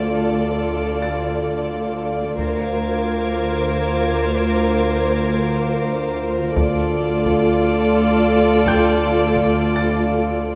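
An eerie, ominous suspense cue in D minor at 86 BPM in 3/4 opens with an intimate chamber violin melody and a distant, woody second violin line over lush viola, close cello and a pure, floating double bass drone on D, all bowed sul tasto, while a glassy, ethereal glass harmonica sustains chords and a brilliant grand piano glints in the background; at 2.4 seconds the harmony moves from Dm to Bbadd9/D as hard-stick taiko enter dry in the background and a faint high violin texture hovers until 6.2 seconds, all held in a moderate scoring stage reverb in this fragment of a longer piece.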